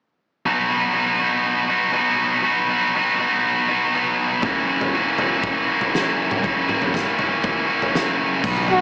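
An overdriven electric guitar opens the piece at 0.5 seconds with a bright, picked riff, sitting up front in this upbeat, carefree slice of indie rock in B major at 120 BPM in a straight 4/4. The harmony moves from B to F#7, and at 4.4 seconds a loose indie drum kit joins with dark cymbals, a fat snare, a punchy kick and toms, its studio room giving the drums a pumping sense of space. Near the close, at 8.4 seconds, a fuzz-laden fingered electric bass arrives on a low B, overdriven and punchy. In the final moments a growling trumpet pushes up front on a single F#, its raspy, gritty jazz-style tone heard at a distance in its own roomy space. The whole is cut from a longer piece and carries light reverb and a small-speaker character.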